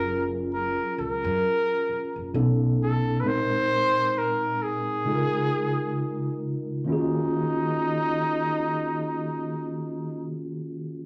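Bathed in the reverb of a large studio, this brief, smooth late-night R&B fragment in Eb minor moves at a slow 66 BPM with a swung sixteenth feel, as a warm, vibrato-laden flugelhorn carries the solo melody up front over a mellow, clean tine electric piano heard through its built-in speakers, drifting from Gbmaj7 to a closing Ebm11, while a woody pizzicato upright bass on steel strings plays only until 3.1 seconds.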